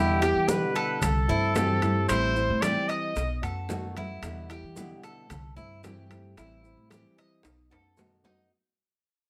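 Warm and danceable, this Cuban son and guajira clip opens with a distant, vibrato-laden solo trumpet up front that drops out at 3.4 s, over fingerpicked nylon-string guitar, a metallic, double-strung Cuban tres picking arpeggios and a woody, dark pizzicato upright bass up front, while thick-skinned congas, tight high-tuned bongos, ringing metal-shell timbales and grainy maracas sit behind in moderate studio reverb, with a drum fill arriving at 7.4 s as the passage fades out.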